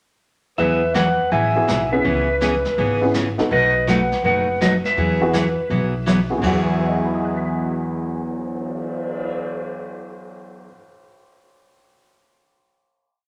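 Swinging and cheerful, this short western swing piece sets a dark, clean lap steel melody with volume swells over a raspy, growling clarinet harmony line mostly in thirds, both stopping at 6.1 seconds, while a bright, up-front acoustic guitar picks four to the bar, a thumpy pizzicato upright bass plays two-beat root and fifth with walk-ups, a distant brush kit sweeps the snare, and a detuned, jangly honky-tonk upright piano joins at 1.5 seconds with syncopated comping through to the final chord.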